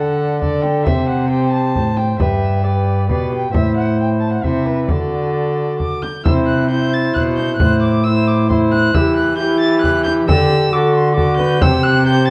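Stately and courtly, this renaissance-style consort dance moves in a straight 3/4 at 134 BPM, a short cut from a longer piece heard as two statements of the same strain over chords such as G, Am, D and Em. A dark, nasal violin carries the melody with a distant, gut-string period tone, over a rich viola second line with light vibrato, a bright, vintage trombone accompaniment and a reedy cello bass placed up front. A deep frame drum, close and dry under soft hands, plays from 0.4 to 11.8 seconds, while the bowed strings sit in a moderate recital-hall reverb within a dark production.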